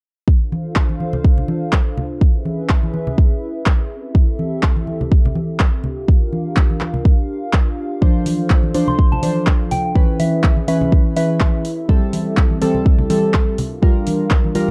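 A deep, up-front kick drum drives this swung 4/4 deep house groove alongside close, bright congas and overdriven analog drum-machine handclaps and hi-hat, while a hollow, flute-like pad pumps through moody minor-seventh chords, round detuned analog key stabs with tape echo arrive at 8.0 seconds, and a soft FM synth bell traces a brief phased melody from 8.9 to 11.6 seconds in this dark, lightly reverberant fragment.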